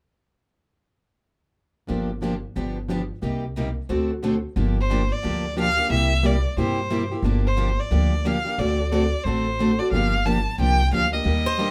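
Two picked, parlour-toned steel-string acoustic guitars, one of them plugged in, open this fast, bittersweet and virtuosic G minor jazz manouche excerpt at 180 BPM with a 60% swing feel, alongside a woody, thumpy pizzicato upright bass on gut strings up front, before a nasal, focused bowed violin with vibrato takes the melody at 4.8 s over Gm7, C7 and D7 changes in a moderate club reverb, and a bright picked swing guitar with finger squeak adds a brief second line at 11.5 s.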